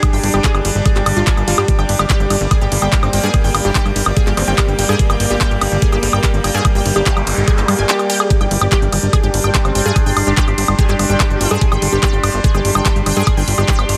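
Lightly reverberant digital ambience frames this hypnotic psychedelic trance excerpt in G minor at 145 BPM, where an up-front knocking electronic kick and a tape-warmed techno kit of handclaps, smooth hi-hat, ride cymbal and woodblock play alongside a punchy, funky, wave-folded analog bass, while a bright, detuned unison pluck riff plays through dub echo over a resonant, phased drone with moving overtones and an airy, breathy pad, all three pumping to the sidechain, as a saturated, metallic FM wobble bass surfaces in the background from 3.0 s and a background noise sweep enters at 7.0 s just before the kick briefly drops out at 7.9 s.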